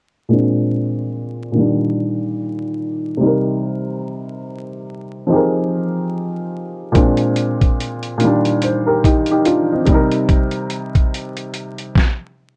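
A woody, short-sustained upright piano opens this nostalgic, melancholic lo-fi hip hop excerpt, its low-passed tone moving under a filter sweep through Bb9, Ebmaj7/Bb, Cm7 and Fm11 chords on a swung feel, until a muffled, pitched-down, compressed sampler-style drum kit with a thumpy kick and medium-tuned snare joins up front at 7.0 s, all set in a small room under vinyl crackle and a dark production before the piano stops at 12.0 s.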